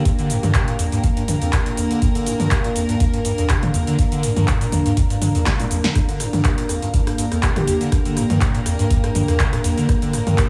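Light studio reverb and a digital ambience frame this driving, trippy acid house excerpt at 122 BPM in G minor pentatonic, resting on a Gm7 chord with a gentle swing on the 16ths. A squelchy, resonant acid bass riff with phaser, overdrive, analog chorus and cassette tape pumps under sidechain beside a deep, tape-warm electronic kick and an analog drum machine of punchy snare, metallic hats, handclaps, rim click, shaker and toms, which plays a fill at 5.5 seconds. Floating, bowed strings hold sustained, soft-attack chords over a moody, detuned sawtooth pad, both also pumping, and an airy, dreamy lead with tape echo surfaces in the background for a single brief G4 at 7.6 seconds.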